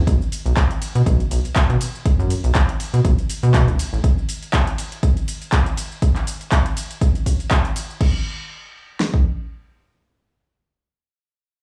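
A rubbery, hollow square bass with a dark, resonant pluck and sidechain pumping anchors this hypnotic deep house excerpt, sitting up front until it drops out at 4.0 seconds. An overdriven electronic kit carries on with a punchy kick and fat snare through 9.2 seconds, alongside metallic hi-hats, handclaps, shaker, ride and crash cymbals that stop at 8.1 seconds, all over a swung sixteenth-note feel. The sound is dry and gritty, with a cassette-tape grain and studio reverb.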